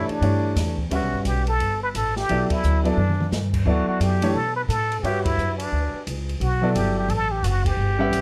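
A plunger-muted trumpet carries the melody up front with a wah-wah effect, vibrato and scooped notes over a clear, vintage-toned concert grand piano sitting on a Gmaj9 chord, a woody, growly pizzicato upright bass and a dark, smooth small-room drum kit with a boomy kick, in this hypnotic, spiritual modal jazz excerpt in G lydian that swings at 175 BPM, with band accents at 2.5, 5.2 and 7.6 seconds and light reverb around close, detailed microphones.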